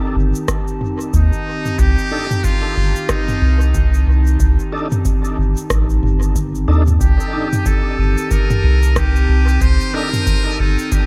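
A dry, hazy and spacious ambient dub piece at 92 BPM in C dorian rests on a Cm69 chord, with a warbling, nostalgic pad holding sustained chords under an up-front, round sub bass, an overdriven electronic kick and a tape-warm kit of rim click, shaker and toms treated with dub echo, while a buzzy metal-muted trumpet carries a distant melody from 1.1 s, a gritty tonewheel organ adds stabs through a slow rotary speaker, and an airy, wind-like tuned noise texture drifts in at 7.6 s.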